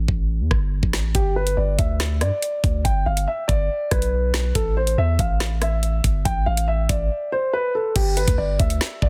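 A deep, sine-toned 808-style bass with a fast attack and long decay sits up front from the first second of this tense, menacing half-time drill excerpt. It is driven by a produced electronic kit of knocking kick, woody snare, rim clicks, metallic hi-hats and crash. At 1.1 seconds a dark, smooth grand piano with a vintage character and long sustain enters with a mellow melody carrying a digital delay, all inside a dense, heavily limited modern master with digital ambience.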